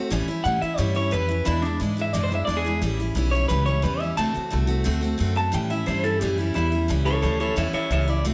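A straight 4/4 at 177 BPM gives this short rockabilly cut in A mixolydian a rollicking, rowdy energy, with a woody, thumpy upright bass played pizzicato on gut strings and a bright, full-bodied picked steel-string acoustic guitar picking through A7, E7 and D7 changes. Up front, an electric guitar through a small old amp carries the melody with a twangy, slightly broken-up tone and tape echo, then breaks into a clean solo at 2.8 seconds that runs to the end. Light reverb and a small room ambience keep the sound close and lively.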